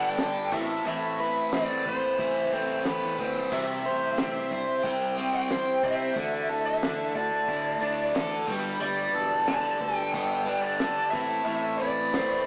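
A rough rehearsal-room recording with a small-speaker sound and moderate stone-room reverb frames this gritty, brooding classic rock excerpt in A minor at 90 BPM, where an up-front, scooped overdriven electric guitar riff with phaser and a bright, crunchy second riff guitar in the background sit under a dark, lo-fi lead guitar melody from a small cranked amp, alongside a fresh-stringed jumbo acoustic guitar picking accompaniment, a very quiet, piping tonewheel organ holding chords through a slow rotary speaker, a round, punchy fuzz bass, and a cloth-damped, thuddy drum kit with a fat snare and tight kick entering at 0.2 seconds, over chords moving from Gadd9 and Amadd9 through C and Dsus2.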